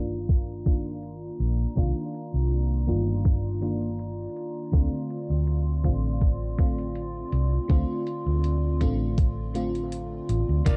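A dark, low-pass-filtered vaporwave excerpt sits in digital ambience under a filter sweep, its woozy, hazy mood carried by a lush, dreamy FM electric piano with phaser, chorus and delay, and a warbling, lo-fi tape-like pad with slow attack, detuned grit and built-in reverb, moving from Cm11 to Dm7 at 4.7 seconds. A round, amped hollow-body bass sits up front with a thumpy, overdriven sampler kick, while faint overdriven electronic hi-hat and tambourine, re-recorded in a small room, enter together with the kick at 0.3 seconds under a light swing. A clean, picked electric guitar with subtle chorus enters only at 10.7 seconds as the excerpt cuts off.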